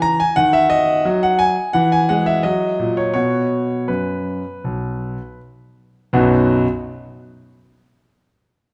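A wet recital hall reverb with a 1.6-second decay surrounds a concert grand piano that sits up front in the mix, its tone clear and smooth with a deep bass and a slightly vintage character. This cheerful, playful classical-period sonatina in B major moves in 4/4 at roughly 79 to 91 BPM, and the rubato feel lets the pulse breathe. The solo piano ranges from B1 up to A#5, passing through colourful harmonies such as D#madd11, Eadd9 and F# before settling on an open B5. A brief second section begins at 6.1 seconds on a B major chord, and the piano stops at 6.7 seconds. Cut from a longer piece, the passage captures a short moment of the sonatina.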